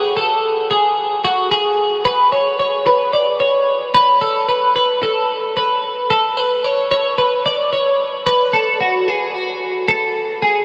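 Bright and breezy, this indie pop excerpt moves at 111 BPM in a straight 4/4, carried by a lone twelve-string electric guitar that is clean, twangy and compressed, picked up front with a lush chorus. The part stays in a narrow upper-middle range, and the music shifts into a new section at 2.1 seconds before the clip ends at 10.6 seconds. A huge ambient reverb with an 8-second tail soaks the mix in a dreamy haze.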